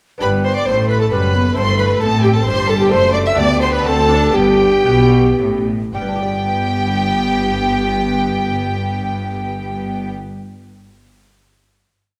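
In a straight 3/4 at 106-134 BPM, this brief, festive baroque-style concerto movement in G major opens with a brilliant ritornello that slows from 2.2 s to 5.9 s before settling onto a held final chord. A mellow, hollow tenor recorder with a soft chiff carries the tune alongside a focused, smooth-topped violin section, while a second violin section doubles the tune at the octave, violas weave independent inner lines and sustained chords, and a background cello section walks beneath a close double bass section doubling the bass line. A delicate, fingerpicked gut-string lute rolls chords in the background and rings on until 10.8 s, all set in a wet recital hall reverb.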